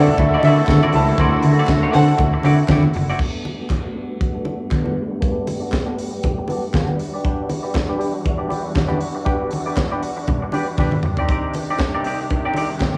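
Swung sixteenths at 119 BPM in 4/4 set up this glamorous, danceable disco excerpt in G major, where a dry, up-front funk drum kit with a high-tuned snare, ringing low-tuned congas and distant handclaps run throughout beneath a clean, compressed semi-hollow electric guitar and lush, focused symphonic strings, with a filter sweep arriving at 3.2 s, while a round, foam-muted fingered bass, an expressive violin section, a mellow baby grand piano and soft-attack vintage horn stabs open the piece before dropping away by 3.2 s, with cassette-tape grit on most parts and light reverb over the mix.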